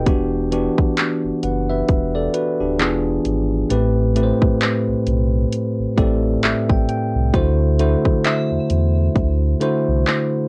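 A lo-fi, homemade cassette sound with a light touch of reverb frames this short, dreamy cut from a longer contemporary R&B piece, moving at a slow 66 BPM in 4/4 with a 16th-note swing. Up front, a bell-like tine electric piano carries the harmony through Em9, E7b9, Am7 and D7, its clean, bright tone heard as if through built-in speakers and colored by tape, with a fill from 5.5 to 7.3 seconds. Beneath it, a deep, full sub bass with octave doubling blends sine and triangle character, its fast attack giving way to sustained notes. A produced trap drum kit of handclaps, bright hi-hat and a hard-clipped kick sits forward in the mix, roughened by overdrive, 12-bit sampler grit and cassette tape. Near the close, from 8.3 to 9.3 seconds, a faint, glassy FM synth bell rings on a single E5, crystalline and warbling with chorus, tremolo and tape echo, adding a tender shimmer to the mood.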